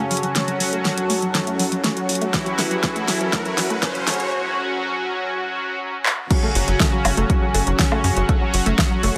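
Lightly reverberant and high-passed, this hypnotic, cinematic melodic techno cut runs at 121 BPM in F# minor, with a bold, detuned analog synth brass melody, an evolving, morphing wavetable pad with phaser, a round, detuned analog pluck arpeggio under a filter sweep, and up-front vintage, warbling brassy analog pad stabs all pumping to the sidechain over an overdriven deep house kit of fat snare, metallic hats, handclaps, woodblock and crash; a background riser and a punchy overdriven electronic kick arriving at 2.3 seconds build through a break toward a drop at 6.3 seconds, where a tight, driving, wave-folded sequencer bass enters at 6.6 seconds.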